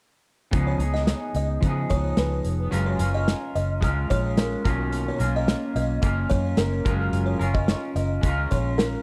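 Studio ambience surrounds this short, nostalgic and dreamy cut of indie bedroom pop at 109 BPM in F# major, where a loose acoustic drum kit with a punchy kick and a pumping small-room sound, a dark, round, foam-muted fingered bass, and a twangy, slightly broken-up electric guitar soaked in lush chorus and warbly pitch drift all sit up front from 0.5 seconds. A soft, woody, buzzing kalimba joins at 0.7 seconds as a mellow second line, coloured by ensemble chorus and tape echo. The chords drift through C#9, F#maj9, Bmaj9#11 and back to F#maj9.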